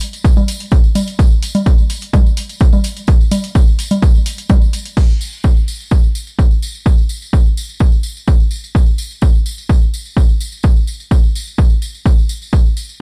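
Dark, warm digital ambience wraps this techno excerpt. At 127 BPM in a straight 4/4, the mood is dark and driving. A layered electronic kick sits up front with a punchy, produced thump, arriving at 0.2 seconds and carrying through to 12.6 seconds. Over the opening stretch, an analog drum machine adds tape-warm congas, crash cymbal and hi-hat, their hats, percussion and cymbals pumping against the sidechain, before it drops out at 5.1 seconds. A jingly acoustic tambourine, recorded close and dry, runs quietly beneath the whole passage, so the second half is pared down to kick and tambourine.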